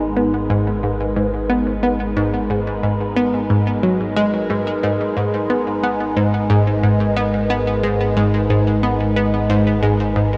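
A bright, nasal analog pluck plays a riff up front with chorus, phaser and delay in this hypnotic, expansive fragment of sequencer-driven space music, over a swirling, detuned phased pad holding sustained chords and an evolving pulse-width-modulated drone on a low G#1, the whole mix steeped in a huge ambient reverb and the warbling pitch drift of worn cassette tape.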